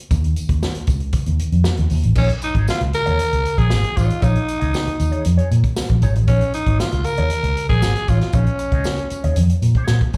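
A cool, driving funk groove in Bb minor at 117 BPM opens with a short break over an Eb7 chord, where a dark, round, foam-muted fingered electric bass and a vintage kit with a punchy kick, medium-tuned snare, hi-hat and crash sit up front beside a jingly tambourine in the background; at 2.2 seconds the harmony settles on Bbm7 as a growling, raspy tenor saxophone solo with slapback echo takes the melody and a bright, twangy electric guitar through an envelope filter adds picked accompaniment with wah and tremolo, all heard as a live gig through the venue's PA with club reverb.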